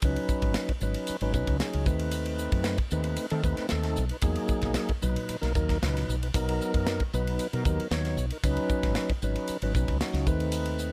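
In a straight 4/4 at 114 BPM, a modern studio drum kit drives this slick, bright slice of electric jazz fusion in B major, its punchy kick, medium-tuned snare, hi-hat and ride sounding airy and polished up front. A woody fretless electric bass, round and hollow-bodied with an analog chorus, plays beneath a clear tonewheel organ turning through a slow rotary speaker, and all three parts run throughout the 10.9 seconds. The organ moves through rich harmony such as C#9sus4, B7b9/D#, a rootless Emaj9#11 and Bmaj7, in a close, dry sound cut from a longer piece.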